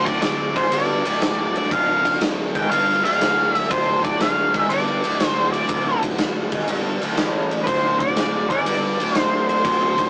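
A dark, octave-fuzzed lead guitar sits up front with a smoky melody over a bright, double-tracked garage riff and a growly, fuzz-soaked bass in the background, while a punchy, hall-sized arena drum kit with crisp cymbals joins at 0.1 seconds, giving this heavy, swinging blues rock and southern rock cut a rough, saturated rehearsal-room sound.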